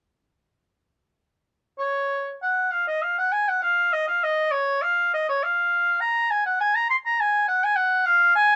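A 6/8 pulse, loosened by rubato, carries this brief cut from a longer baroque-style fantasia for unaccompanied oboe. The mood is grave yet flowing. The oboe enters at 1.8 seconds and plays alone until 8.6 seconds, spanning Db5 to C6 with a clear tone, a soft attack and light vibrato in a classical manner. It sits up front, though it also carries a roomy, slightly distant quality. Close, detailed microphones and light reverb frame the solo line in an intimate yet spacious setting.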